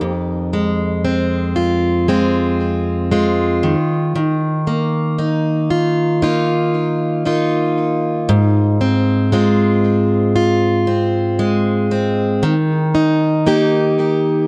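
At a slow, straight 58 BPM in 4/4, this hopeful, heartfelt pop fragment in Ab major features a lone picked, plugged-in steel-string acoustic guitar, bright and boxy and up front with a digital delay, moving from Fm and Ebsus2 to Ab6 around 8.3 seconds and then to Eb, all under light reverb and the warbling pitch drift of worn cassette tape.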